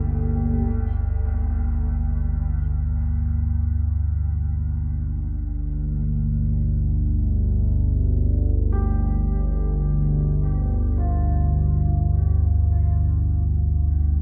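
Vast and ominous, this dark ambient drone excerpt in free time rests on an up-front, evolving sawtooth-and-pulse analog drone with lush chorus, briefly joined at the opening by a deep, detuned analog pad and a metallic bronze singing bowl struck with a felt mallet in the background, while open, long-sustaining baby grand piano arpeggios, present from the start, fade in from 0.7 seconds through a haze of analog chorus and diffuse ambient delay.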